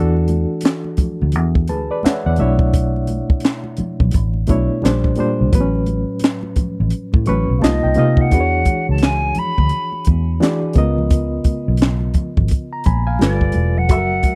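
A reedy, barky electric piano opens this soulful, introspective neo-soul and R&B excerpt, lightly overdriven with a fast tremolo and heard through its built-in speakers, alongside a dark, foam-muted vintage electric bass that sits round and up front. Very quiet congas with a thin, bright skin and a compact cocktail drum kit with a punchy kick, high-tuned snare, hi-hat and handclaps join almost at once, setting a swung 86 BPM groove in 4/4. The electric piano adds fills as the chords drift through extended colors such as E9sus4, Bm11 and A69. At 7.6 seconds a distant concert flute enters with a pure, straight tone and crisp attack, carrying the melody as the harmony moves on to E13, C#13 and G9. The sound is dry and close, with little reverb, in the manner of a 1970s studio recording.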